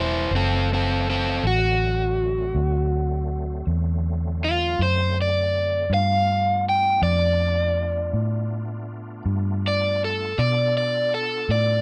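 An overdriven semi-hollow guitar leads this soulful, rollicking slow blues in 12/8, playing a picked solo melody with a hollow-body, up-front voice across the whole 11.8-second cut from a longer piece. Beneath it, a vintage fingered electric bass sits close and forward, its foam-muted tone dark and round. A bright tonewheel organ holds sustained chords much further back in the mix, its reedy, clean sound colored by key click, chorus vibrato and a slow rotary speaker. The harmony moves from D9 to G9 at 5.9 seconds. Light reverb and a rough home-demo mix give the recording an unpolished character.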